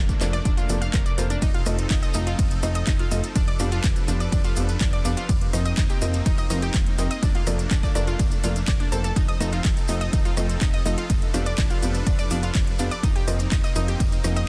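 A lush, detuned supersaw pad and a punchy, funky analog bass open this hopeful, uplifting progressive house excerpt together, both pumping against the sidechain as the harmony cycles through Bbmaj7/F, F7, G7/F and Cm7/F over a held F. A punchy, overdriven electronic kick sits up front, joined by an overdriven house kit of handclaps, metallic hi-hats, ride cymbal and rim click re-recorded in a large room, plus a grainy cabasa in the background. Above them, a round, warbling analog pluck plays chorused arpeggios with tape echo, while a soft, felt-muted upright piano adds mellow, intimate stabs, all within a dense, heavily limited modern master.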